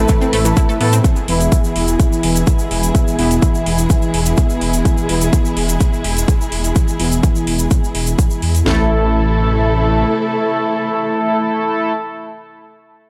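A punchy house drum kit with a cracking snare and toms drives this cinematic, hypnotic melodic techno cut at 126 BPM in A harmonic minor, joined by metallic electronic hi-hats, a grainy tube shaker and a rumbling detuned saw bass whose filter sweeps through the first 8.7 seconds, while brassy, chorused analog synth stabs with delay, bowed dark strings with vibrato and portamento, and a lush unison pluck arpeggio heard only for the opening 1.0 second all pump against the kick over Am and E chords, before the drums drop out at 8.8 seconds and the bass at 10.1 seconds, leaving the strings and brass in a dry, gritty mix touched by light reverb.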